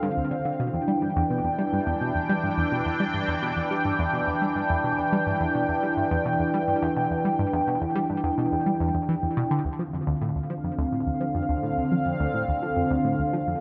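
A sweeping, resonant pad of detuned sawtooth and sine layers sustains Dm7 and Em7 chords with slow attack and chorus, while a tight, nasal sequenced synth drives a low riff with filter pluck and delay beneath it at 106 BPM, the whole cosmic, expansive space-music excerpt bathed in wet plate reverb and dark of anything above 7.9 kHz.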